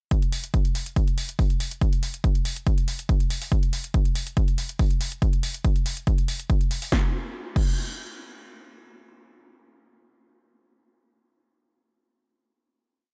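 A straight four-on-the-floor pulse drives this short, whole techno piece, with an overdriven, punchy analog kick sitting up front and setting an industrial, hypnotic mood. Behind it, a programmed analog drum machine adds closed and open hi-hats, a snare backbeat and crash cymbal, its hats and cymbals pumping from sidechain compression, all inside a digital ambience. The groove runs until a final hit arrives at 6.9 seconds, and both drum parts stop at 7.6 seconds.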